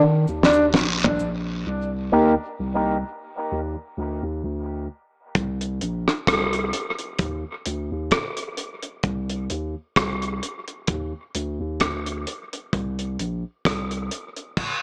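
This hypnotic, spacious dub reggae fragment in C minor moves at a slow 65 BPM in 4/4 with a light swing, opening on a deep, round sub bass that sits up front. A damped 70s drum kit comes in at 0.4 seconds with a fill, its tight kick, fat snare, rim clicks, toms, hi-hat, dark cymbals and crash sounding dry and polished, with dub echo trailing off the hits. A close cabasa and guiro, with egg shaker and group handclap colours, flickers briefly through echo near the start. A twangy, scooped electric guitar with an envelope filter and low-pass filtering appears for a brief, bright picked phrase at 2.1 seconds, also sent into dub echo. The harmony drifts between Cm7, Bbsus2 and Cm with bars of bare rhythm in between, and the whole is bathed in moderate spring reverb and an echo-heavy, small-speaker sound.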